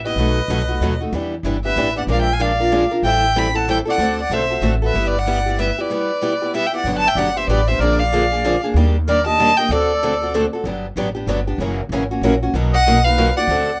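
Charming and swinging, this short excerpt of acoustic string swing in G major moves at 189 BPM in 3/4, with a rich, smooth bowed violin carrying the melody up front, a reedy, airy accordion as second line, and both dropping out at 10.3 seconds before returning at 12.7 seconds, while a woody, thumpy pizzicato upright bass and two bright picked steel-string guitars, one boxy and up front, the other set back with finger squeak, drive the accompaniment through chords such as B7, Ebmaj7 and Bmaj7 in light reverb.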